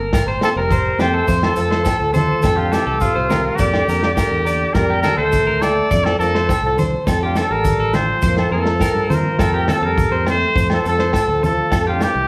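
Joyful and sunny, this excerpt of highlife guitar band music moves at 104 BPM in F major, with a clear, punchy trumpet out front carrying the melody over a breathy, scooped trombone second line, twangy spring-reverbed electric guitar arpeggios at the edge of break-up, a quiet fingerpicked nylon-string guitar, a round fingered electric bass, a gritty, saturated breakbeat kit with tight kick, and background agogo bells, low-tuned congas and grainy maracas, all played live in one large studio room.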